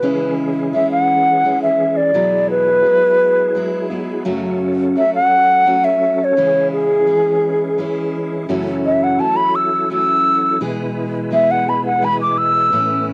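An airy, hollow wooden flute carries the melody up front with vibrato over a picked steel-string acoustic guitar with audible finger squeak and a reedy, bright tonewheel organ holding sustained chords through a rotary speaker with chorus vibrato, all on cassette tape in a small room, in a wistful, intimate acoustic folk piece at 85 BPM in 3/4 that moves from C#m through Eadd9 and F#m to a closing E/B in this 13.1-second cut from a longer piece.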